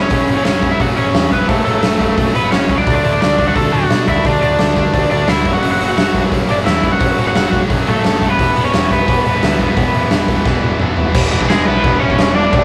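A raw garage drum kit drives a straight 4/4 punk rock beat at 174 BPM, its punchy kick, medium-tuned snare, hi-hat, toms and crash sitting up front with a dark, rolled-off top and a bright stone-room ring, and a fill at 10.5 seconds tips the music into a short new section at 11.1 seconds. Over it, a crunchy overdriven guitar carries the melody up front with digital delay, while a tight, double-tracked distorted guitar grinds out the riff and a growling picked bass with overdrive rumbles in the background. The mood is urgent and angry in F# minor, moving through F#m, D and E, captured as a rough rehearsal-room recording with light reverb in this fragment cut from a longer piece.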